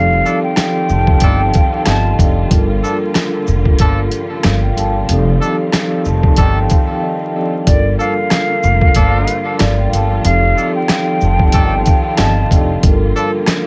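A hollow, airy concert flute opens this dark, moody boom-bap hip-hop excerpt over mellow soft-mallet vibraphone, lush bowed strings in the background and a woody, growly pizzicato upright bass, all arriving together at the start. By 0.3 seconds a gritty, pitched-down sampler-style drum kit joins up front, with a thumpy kick, medium-tuned snare, rim click, hi-hat and shaker, swung at 93 BPM in 4/4. Smooth jazz-style horn stabs with a light vibrato and delay join the drums, and very quiet, distant finger snaps sit far back in a large room. The flute falls silent at 2.2 seconds, leaving the ringing, boxy vibraphone with its slow motor vibrato and the sustained strings to carry the harmony as it alternates between F13 and Gm9 in G minor. After a short break, the flute returns with its crisp attack at 7.7 seconds for a second pass of the same section. Light reverb and a prominent layer of vinyl crackle frame the whole piece, which is tuned slightly flat to A4 = 436 Hz.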